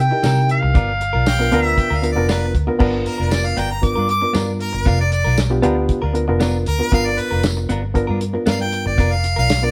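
A gritty, overdriven harmonica opens this laid-back, swaggering straight-eighth soul blues at 116 BPM over C7#9 and G7#9, with scooped notes and tongue slaps until 2.3 s, alongside clean, compressed guitar stabs, a round, foam-muted bass up front, a barky, reedy electric piano with light overdrive, and a dry, cloth-damped drum kit with a fat snare, tight kick, dark cymbals and tambourine; a bright, punchy harmonica enters at 1.3 s and takes a solo from 2.8 s, all heard as a band playing live in one room with moderate studio reverb.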